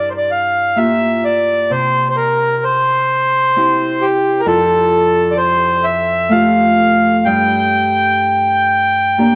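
A reedy, boxy accordion carries a mournful, haunting melody over fingerpicked, ringing Celtic harp from the first moment of this rubato Celtic slow air at 64 BPM in 3/4, both up front and moving from Gm7 through C to Fadd9 before a brief harp fill at 8.7 seconds, all bathed in a moderate scoring-stage reverb and the warbling pitch drift of worn old cassette tape in a short cut from a longer piece.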